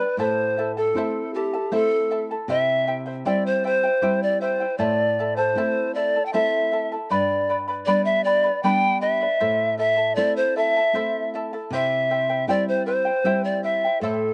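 A dry, open-air recording with muted highs carries this earthy, wistful fragment of Andean folk in A minor at 78 BPM in a straight 3/4. An airy, up-front wooden pan flute sings the melody with vibrato, tongued chiff and a slightly unsteady breath, over a shimmering fingerpicked charango with slapback echo on its double strings and a full-bodied, deep classical nylon-string guitar, all three playing through the whole 14.3 seconds.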